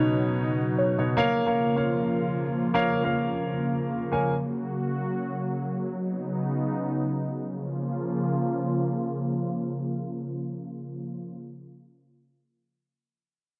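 Eerie and brooding, this free-time hip hop fragment in Bb phrygian opens with muted, felt-like synth keys playing brief chorused arpeggios that stop at 1.2 seconds, while a dark, mellow baby grand piano accompanies until 4.3 seconds. A warbling, detuned analog pad sits up front with sustained chords through Badd9, Bbm and Gb, and a filter sweep runs until 7.5 seconds. The production is dark and warm, with light reverb.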